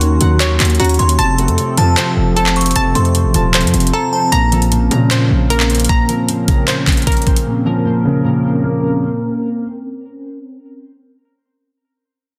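Dense, heavily limited and modern, the mix sits in light digital reverb, with the knocking kick, metallic hats and handclaps of an electronic trap kit pushed up front beside a distorted, aggressive 808-style bass. This menacing, hard-hitting hip hop cut moves at 153 BPM in 4/4 with a half-time feel, in Bb harmonic minor, shifting from Ebm7 to F before settling on Bbmadd9. A dark, mellow baby grand piano carries the accompaniment, while a bouncy square-wave pluck, detuned and ringing with chorus and tape echo, spins bright arpeggios over a soft, flute-like pad that holds sustained chords in the background. A crystalline FM bell adds a glassy second line through the opening until a short break leads into a new section at 4.3 s, where a filter sweep takes over. The bass drops out at 5.9 s and the drums at 7.5 s, then the pluck and piano fall away by 9.6 s, leaving the hollow pad to carry this excerpt from a longer piece to its close.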